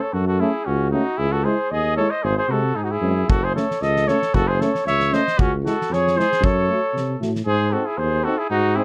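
A mellow flugelhorn opens this restless, fiery Balkan brass band excerpt up front with the melody, light vibrato and a soft attack, over a warm trumpet second line, a distant, roomy tuba bass, a background euphonium and a trombone in accompaniment, the brass all in classical style at 115 BPM in 2/4 with a slight swing, while a dark, acoustic drum kit with a punchy kick and fat snare joins at 3.3 s and stops at 7.4 s over F#m, C#m and G# chords in F# dorian sharp4.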